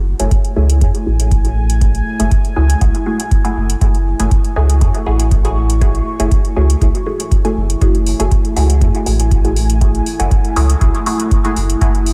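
An overdriven analog kick sits up front beside a round, soft triangle-and-square sub bass that pumps with sidechain in this nocturnal, deep dub techno excerpt held on a single chord throughout. Metallic analog hi-hats, also driven and re-recorded in a small room, sit above two muted, detuned sawtooth chord stabs, one a higher filter-plucked riff and the other a lower, background part with a filter sweep, both colored by phaser and dub echo. A moody, full-bodied pad with slow attack, chorus and its own reverb enters at 0.5 seconds and holds to the end, while the mix sits in a light reverb.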